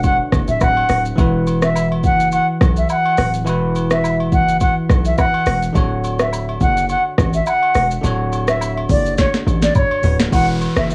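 Joyful and breezy, this afrobeats excerpt moves at 105 BPM in D major with a lightly swung 16th-note feel, led by an up-front concert flute with a pure, straight, tongued tone coloured by cassette tape and tape echo, over a bell-like, barky tine electric piano on Dmaj7 and Esus2 chords, a punchy, heavy 808-style bass, a produced afro-pop drum kit with deep kick, sharp snare, smooth hats and tape-warm small-room character, background agogo bells and woodblock with egg shaker and group handclaps, a drum fill from 9.2 seconds, and an electronic downlifter entering at 10.3 seconds to close the excerpt, all set in light reverb and small-room ambience with a home-cassette feel.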